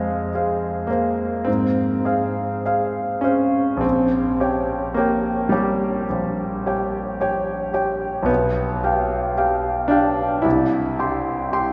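Classical romantic nocturne for solo piano, serene and tender in a slow, rubato 4/4, with a clear, natural concert grand of deep bass and short sustain sitting up front across its range from Bb1 to C6, bathed in a wet cathedral reverb of a church or hall as the harmony moves from F minor through a diminished chord and G7 to rest on C at 10.4 seconds in this brief passage cut from a longer piece.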